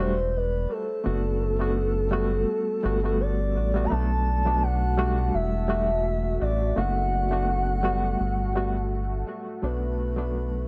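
A breathy sine lead with lush chorus and tape echo opens this dark, smoky trip hop excerpt in B minor at 84 BPM, alongside a barky, lightly overdriven reed electric piano with fast tremolo and a round, up-front analog bass, all swinging gently on the 16ths over Em11, Bm7/F# and Gmaj9 chords. At 4.7 seconds a moody, detuned analog pad enters with slow-attack sustained chords, while the gliding lead carries vibrato and portamento. The echo-heavy mix sits in light reverb and fades out from 7.7 seconds.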